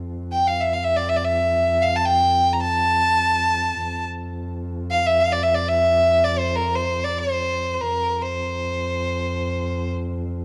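A muted double bass opens the recording, holding a low F drone from the start through 10.4 seconds, its bowed tone dark and veiled with vibrato. At 0.3 seconds a single clear violin enters up front, bowing a smooth, even melody between Bb4 and Bb5 with light vibrato until 9.9 seconds. This is an Arabic maqam ensemble piece in free time, set in F maqam ajam, with a passionate mood taken from a longer work. The violin sits close and prominent over the quieter, shadowy bass, which stays beneath it as a steady foundation. A moderate reverb with a 1.9-second tail gives the pair the spacious air of a scoring stage, and the overall production is dark and warm.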